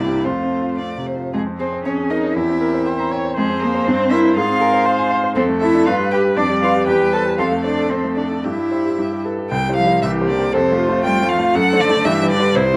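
A graceful, lively classical-period movement for piano quartet opens with all four players together: a focused, rich violin carries the melody with vibrato over a bright, brilliant concert grand with deep bass, while a smooth-topped viola fills in the accompaniment. A warm, expressive cello, set more distant, adds a second line with vibrato and portamento, and the quick 2/4 pulse at 119 BPM flexes with rubato. The music moves from F minor into C major at 5.4 s, all heard in a moderate studio reverb with a dark production.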